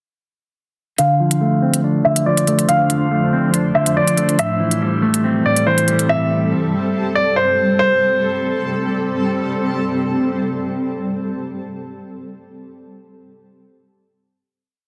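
Ominous and menacing, this short half-time drill piece opens on a filter-swept breakdown where a clear, polished grand piano loops a short-sustained melody, a dark clean electric guitar repeats a rising eighth-note arpeggio through Dm7 and Am7, and crisp electronic hi-hats skip up front until 6.1 seconds, while a blurred, evolving granular pad enters at 2.3 seconds and carries the final chord to 12.0 seconds in a dense, heavily limited master with light digital ambience.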